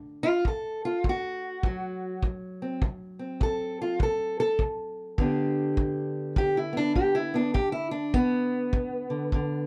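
Swaggering and soulful, this short cut from a longer acoustic country blues piece in D mixolydian swings along at 101 BPM in 4/4, as a dark, boxy fingerpicked parlour steel-string acoustic guitar carries the melody up front from D2 to A4 over a D7 that moves to G at 5.2 seconds, joined from 0.4 seconds by a tight, roomy kick drum played with brushes in a dry sound.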